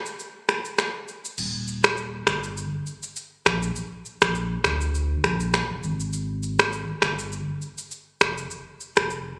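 Romantic, joyful afrobeats at 101 BPM in Eb major, this short cut opens on an up-front, tape-warm electronic afro-pop kit of crash cymbal, finger snaps, rim click and shaker swinging on the 16ths, until at 1.4 seconds the kick drops away as a deep, round sine sub bass with a fast attack and sustained notes enters, the whole captured on a phone in the room with compression and a lush club hall reverb.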